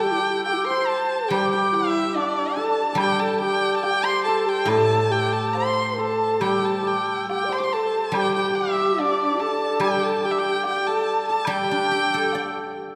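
Loose and rubato in two, this festive, pastoral Chinese chamber excerpt sets a nasal, up-front bowed erhu melody with vibrato and portamento over a breathy, hollow low xiao, a shimmering hammered dulcimer and a silvery, fingerpicked guzheng, with a very quiet woodblock entering at 0.5 s, all heard from further back in a concert hall with a long, wet reverb.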